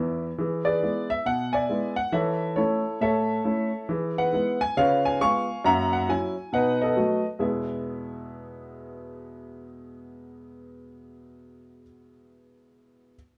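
A clear, woody, natural upright piano sits up front as the only instrument in this short, playful and exuberant stride jazz excerpt in E major, swinging at 136 BPM in 4/4 across a range from E2 to C#6 and moving through E7, A/E, C#7, F#7 and B7 before settling on E at 7.4 seconds, all with moderate studio reverb.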